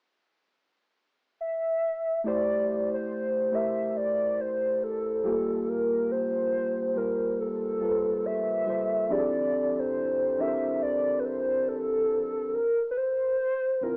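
Hip hop with a mellow, dreamy swing, where a warbling, detuned lead with vibrato and chorus enters at 1.4 seconds, joined at 2.2 seconds by muted, felt-like synth keys, soft and dark under plate reverb, moving through Am7, Gm9, Fmaj13 and Dm9, all in a small wet room with a cassette-tape, AM-radio haze.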